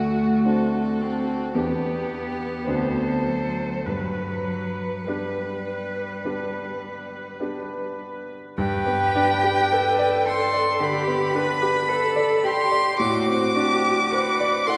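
From the first moment, a rich, focused violin sings the melody over a cello second line with vibrato, a smooth, even viola and a clear concert grand piano with deep bass, all together in this serene, tender slow romantic movement for piano quartet in G major, cut from a longer piece, unfolding with rubato at 49-56 BPM in 4/4 and bathed in a wet church reverb.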